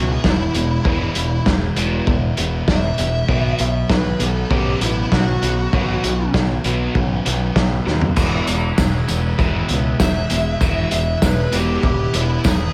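A dark, smooth overdriven lead guitar with slapback echo solos through this carefree, upbeat indie rock excerpt, dropping out at 6.3 seconds and returning at 10.0, over a biting guitar riff with subtle chorus, a bright, crunchy guitar riff in the background, a growling overdriven electric bass and a muffled, lo-fi vintage drum kit with a fat snare sitting up front, whose fill ushers in a buzzy combo organ with light vibrato and a jingly tambourine at 8.2 seconds, all in light reverb.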